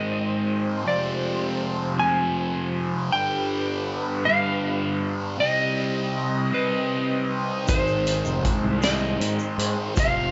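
A double-tracked, fuzz-drenched guitar riff with phaser leads this hypnotic, dark psychedelic rock excerpt in 6/8, alongside a clean lap steel slide melody trailing tape echo and a nasal, reedy chamber string section holding sustained chords, before an overdriven picked bass, a punchy vintage drum kit with a high-tuned snare, and a grainy shaker in the background all enter at 7.7 seconds, in a small room with light reverb and a rolled-off top.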